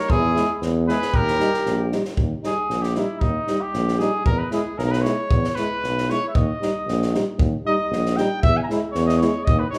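Balkan brass band folk at 115 BPM in a straight 2/4, bittersweet and fiery in Eb phrygian dominant, with a mellow, punchy trumpet carrying the melody up front and taking a solo from 2.2 seconds while a flugelhorn with light vibrato adds a brief second line until 1.9 seconds, a clear tuba holds the bass, a compact cocktail kit with a high-tuned snare and punchy kick drives the beat, and a smooth-topped trombone and euphonium fill in accompaniment, all in a roomy studio reverb as the harmony shifts between E and Eb in this excerpt cut from a longer piece.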